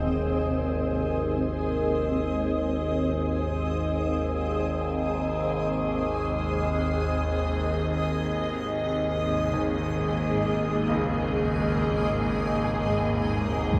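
An overtone-sweeping drone sits up front in this unsettling, dark ambient excerpt, its sawtooth, sine and triangle tones shifting through moving overtones, with ring modulation, resonance and chorus giving it a metallic unease. Alongside it, a granular cloud pad holds sustained chords in Ab major, its detuned, blurred texture slowly evolving, with shimmer reverb adding a haze above its mellow body. The music floats in free time, and at 8.3 seconds the harmony settles onto an Ebsus4 over Ab. At 9.5 seconds a concert grand piano enters in the background with arpeggios, intimate and polished, with deep bass, long sustain and audible action noise, blurred by delay and shimmer reverb. A huge, dark impact lands at 13.7 seconds, muffled by a low-pass filter, just as the excerpt is cut off. The whole piece is steeped in a vast, echoing cathedral space with a long, wet reverb tail.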